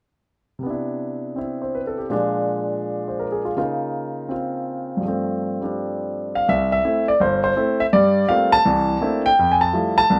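A swung 4/4 pulse at 165 BPM drives this playful jazz excerpt in C major, played entirely by a solo concert grand piano from 0.6 to 10.2 seconds across a range of G1 to A5. The warm, intimate piano sits up front with deep bass, long sustain and audible action noise, moving through rich harmonies such as Cmaj9, Bb7 and Db69 before a second section at 6.5 seconds passes through Gm11 and C13 to close on Fmaj9. The piano keeps a natural sound within a light reverb.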